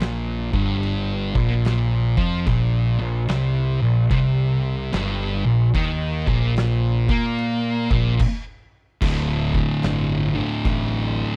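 Heavy and hypnotic, this stoner and doom metal excerpt crawls at 73 BPM in 4/4 with a swung feel, as two thick fuzz guitars grind out the riff over Bb5 power chords, one dark and up front, the other warmer and set in the background. Beneath them an overdriven, picked electric bass growls in the low register, while an oversized low-tuned drum kit adds a punchy kick, fat snare and dark, saturated crash cymbals with a gritty edge. After a stop from 8.2 to 9.0 seconds, the riff shifts to D5 for the closing bars, all captured in a dry, close 1970s-style studio sound.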